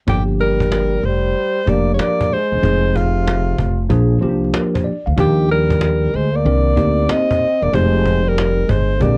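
Jazz-hop with a cool, warm mood, this short cut from a longer piece moves at 94 BPM in 4/4 with a swung sixteenth-note feel, tuned slightly sharp to A4 = 441 Hz. A breathy alto saxophone carries the melody up front in a clear, subtoned jazz voice with light vibrato, set in plate reverb. Beneath it, a dark, whispered trombone plays a second line with soft attacks, scooped notes and vibrato, its intimate tone doubled by a slapback echo. A mellow tine electric piano, clean and direct yet worn and slightly out of tune, supplies the accompaniment, while a woody pizzicato upright bass with steel strings sits prominently under a compressed, saturated cajon with faint snares. All five parts play throughout the 9-second span, moving through Gm7, Fm7, Bb7, Ebmaj9, Cm9 and Fsus2. Light reverb and the warbling pitch drift of old cassette tape give the recording its worn, warbly character.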